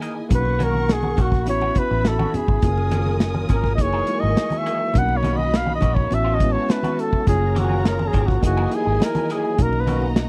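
A warm flugelhorn carries the melody up front in this smooth, romantic slice of lush 1970s-style soul, played with light vibrato in a jazz-style solo from 0.3 s. The groove moves at 103 BPM in a straight 4/4 in F# major, grounded by a punchy, rolled-off modern drum kit with a medium-tuned snare and a round, foam-muted fingered bass that sits close and dark. A worn, slightly out-of-tune tine electric piano with light overdrive supplies the accompaniment, while a picked, compressed electric guitar plays a wah-treated riff in the background and bright, low-tuned congas sit behind it. A distant, woody string section with vibrato adds a lush second line touched by slapback echo, and a very quiet tonewheel organ enters at 2.6 s with sustained chords, its key click and rotary speaker just audible. The harmony cycles through Bmaj9, A69, F#maj9 and F#13, and the dry, close studio sound feels intimate and plush.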